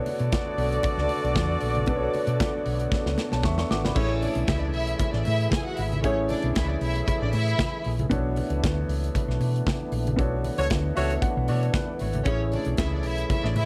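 A round, dark hollow-body bass sits up front in this celebratory, glamorous disco excerpt, joined by a punchy studio drum kit, natural grand piano, a lightly overdriven tonewheel organ with slow rotary swirl, very quiet low-tuned congas, tight horn stabs carrying tape echo, and a lush, distant string section that enters at 4.0 seconds after a drum fill, all set in a dark production with light studio reverb.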